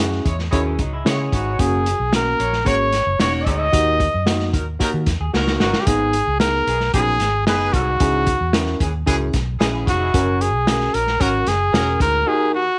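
Uptempo 1960s-style soul at 112 BPM in a straight 4/4, this short excerpt cut from a longer piece feels warm and uplifting as it moves through C#m, F#, D#m and G#m. A close-miked trumpet with vibrato carries the pop-style melody up front, while a distant, roomy horn section plays a punchy jazz-style second line behind it. A worn, slightly out-of-tune tine electric piano comps through a combo amp, and a dark, foam-muted fingered bass gives a round, punchy low end. The vintage drum kit sits up front with a muffled, rolled-off top, a tight kick and a medium-tuned snare, adding a fill at 5.3 seconds. In the background, a mellow baritone saxophone plays a subtone riff with scooped notes, and a slightly broken-up, compressed electric guitar adds short picked riffs, first at 0.5 seconds, all within small room ambience.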